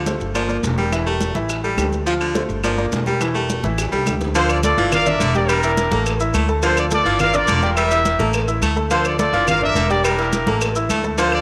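Salsa at 211 BPM in D minor, passionate and danceable, where a thumpy, gut-strung upright bass, a clear grand piano and an edgy, forceful baritone saxophone with vibrato drive over background congas, tight bongos and cowbell, woody claves and grainy maracas, until a drum fill at 3.8 seconds brings in a bright trumpet section up front with light vibrato at 4.4 seconds, all set in a moderate plate reverb.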